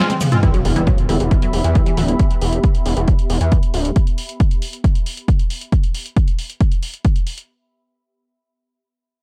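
Driving peak-time techno in E minor at 136 BPM, dark and relentless, this short cut opens on a brief break with a drum fill before an overdriven, up-front kick lands at 0.4 seconds beneath a punchy analog drum machine of pumping hats, ride, shaker and toms, a gritty saturated sawtooth bass, edgy sync-sweep polysynth stabs with tape-worn chorus and dub echo under a filter sweep, a squelchy resonant blip pluck riff with phaser, an airy breathy pad, a barely audible swarming drone and a very quiet electronic impact, all in a dry, dark production.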